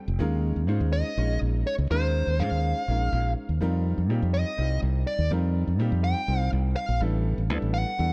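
A bright, direct fingered electric bass sits up front in this slick, soaring jazz excerpt in 7/8, moving at 246 BPM in eighths with a straight feel. A dark, smooth overdriven lead guitar enters at 0.9 seconds with a picked melody between C5 and G5, over a clear, boxy grand piano whose short-sustained accompaniment outlines Eb9sus4, F9sus4 and A9sus4 chords. The small room lends the production a dark, warm character.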